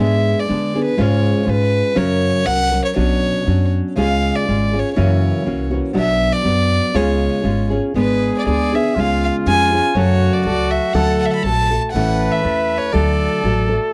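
A bowed violin, fingerpicked nylon-string guitar and plucked upright bass open this passionate, dramatic fragment of mariachi-flavoured Mexican folk, moving in a loose, rubato two-beat feel. The single violin carries the melody up front with a soft attack and an airy, floating sul tasto tone that stays pure and close. Underneath, the full-bodied classical guitar sits just as forward, its fingerpicking marked by audible finger squeaks, while the woody, growly bass fills the low end. At 8.0 s a clear trumpet joins with a light-vibrato second line in a classical style, as the harmony moves from a diminished chord back toward minor and major colours. The dry, close studio sound, touched by light reverb, carries a 1970s character.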